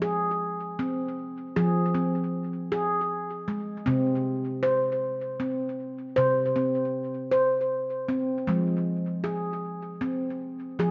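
World meditative music for solo handpan, hypnotic and unhurried at 78 BPM in 3/4 with a light swing, drawn from F minor pentatonic over a span from C3 to C5. The nitrided steel handpan sits up front, ringing and mellow under soft fingertips, with a delay trailing its notes as the harmony moves from Fm to an unharmonized passage at 3.9 seconds and back to Fm at 8.5 seconds. A wet echo chamber reverb surrounds this short cut from a longer piece, and the dark top end keeps the sound soft and mid-forward.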